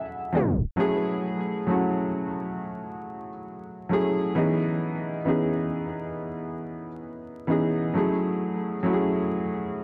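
A short upright piano fill opens the clip, dragged down by a tape stop between 0.3 and 0.8 seconds before the main passage settles in. This is a reflective, hazy hip hop piece cut from a longer work, with the solo piano carrying everything through to 9.8 seconds in a swung 4/4. The piano sounds woody, warm and slightly detuned, sitting up front with a natural character, colored by cassette tape, a low-pass filter and delay. Its harmony moves from F#m9 to C#m9/E and back to F#m9. A wet church reverb and vinyl crackle soak the mix in a dreamy atmosphere.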